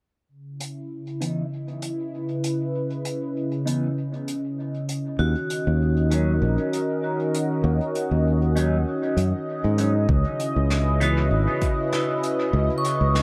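Ambient dub with a deep, meditative lull, opening on a smooth, detuned sawtooth pad that sweeps through a filter until 10.1 s, joined by distant, roomy brushed hi-hat and snare and by clean picked electric guitar stabs dripping with phaser and dub echo, before a growly, punchy fingered bass and a dark, ringing hard-mallet vibraphone arpeggio enter at 5.2 s, with a layered electronic kick briefly thumping beneath it all from 10.1 s, everything bathed in springy reverb.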